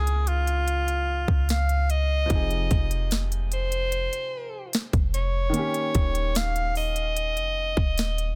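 A straight 4/4 trap kit with a hard-clipped kick, sharp snare and crisp hats drives this longing, sensual contemporary R&B fragment, where a deep, boomy 808-style bass sits up front beneath an intimate grand piano with audible action noise, while an edgy, forceful alto saxophone carries the melody in scooped notes touched with tape echo, set in a dry, dense, heavily limited modern master.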